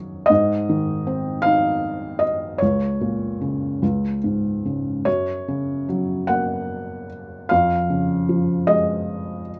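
Peaceful and warm, this brief excerpt is lyrical classical solo piano in F# major, unfolding in a slow 6/8 at 50 BPM with uneven, rubato pulses that breathe freely. A felt-muted upright piano plays alone for the full 9.6 seconds, spanning C#2 to F#5 with a mellow, intimate tone from its thick felt and short sustain. It sits up front in a light reverb, and its harmonies move gently from G# through A#m/C# and C#5 to F# before arriving at C#/E#.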